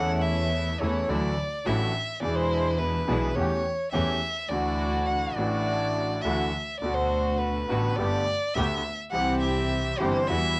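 A home cassette recording in a wet booth ambience carries this sultry, tense tango excerpt at 105 BPM in 4/4, played with a rubato feel. An up-front, warm bowed violin takes the solo second line for the full 10.6 seconds, with vibrato, portamento and a soft attack, while a bright, brilliant concert grand piano with deep bass supplies accompaniment and a chamber string section adds reedy, gut-string stabs in period style. Beneath them a dark, boxy bowed double bass carries the bass line with expressive vibrato and portamento, as the harmony moves from A/E through Dadd9 and E7 to close on C.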